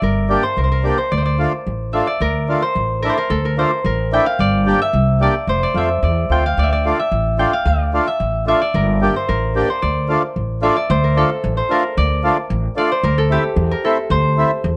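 A straight 2/4 pulse at 111 BPM drives this festive yet soulful klezmer passage in D minor, cut from a longer piece, where a fingerpicked concert harp carries the ringing melody in plate reverb over a growly, woody pizzicato upright bass, while a reedy, close-miked mellow accordion adds full, dry accompaniment from 0.3 seconds, all three parts sitting up front in a lightly reverberant room.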